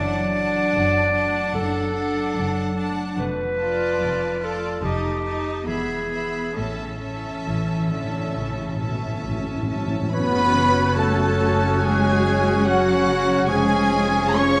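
Tender and serene, this slow, rubato romantic orchestral excerpt in A major, turning to F# minor at 10.1 s, sets a lush, vibrato-rich violin melody above a bright clarinet line, focused second violins, smooth distant violas, ringing harp arpeggios and bowed cellos and double basses, with articulate timpani entering at 6.6 s before oboe, airy flute, mellow bassoon, French horns and a close-miked trumpet join at 10.1 s and trombones follow at 10.2 s, all bathed in a spacious scoring-stage reverb.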